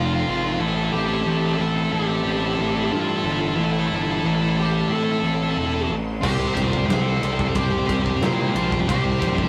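Heavy metal at 91 BPM in 4/4, aggressive and relentless, this short cut from a longer piece moves from F to A minor early on and lands on C at 6.2 seconds. A growly, fuzz-laden picked electric bass sits up front with a bright, high-gain guitar riff, while a very quiet, double-tracked fuzz guitar riff spans from low to high underneath. A dark, overdriven lead guitar carries the melody, shadowed by a faint high-gain second line, and a clear, bowed string section with vibrato holds sustained chords that are barely audible. At 6.2 seconds a sludgy overdriven guitar riff enters in the background along with a big acoustic drum kit, fat on the snare and punchy in the kick, with crash and ride cymbals and a rolled-off top. The whole thing has the rough feel of a rehearsal-room recording, with moderate reverb around it.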